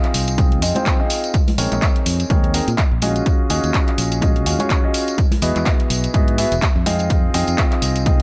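Piano house at 125 BPM in Eb dorian with a swung sixteenth feel, bittersweet yet energetic, cut from a longer piece and moving through Fm7, Bbm11, Ebm11 and Emaj9 chords. A clear, up-front concert grand carries the riff with long sustain, pumping against the sidechain and colored by a low-pass filter and tape echo, while a punchy fingered electric bass pumps beneath it from 0.1 seconds. A house kit with bright hats and handclaps plays from the start in small room ambience, an analog electronic kick lands up front at 0.4 seconds, and vintage, band-limited tambourine and congas sit in the background.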